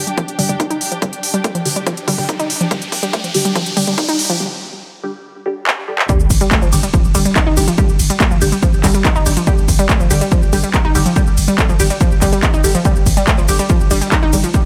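Driving and intense, this excerpt of peak-time techno runs at 142 BPM in a straight 4/4. It opens as a build-up, with a rich, bowed string section in light vibrato holding a smooth texture until 4.4 s, while a muted, deep dub chord stab, coloured by phaser, lush chorus and digital delay, pumps under filter sweeps. A punchy, detuned unison pluck with overdrive and delay carries the riff throughout, and an electronic riser and sub drop rises from 1.7 s into a short break and a drum fill. At 6.1 s the drop hits with an impact, and a moment later, at 6.2 s, a growling, buzzy 808-style bass on G1 enters, overdriven and low-pass filtered. Throughout, a heavy, up-front overdriven kick drives the groove alongside a layered techno kit of handclaps, smooth hats, ride cymbal and shaker, all sitting in light reverb.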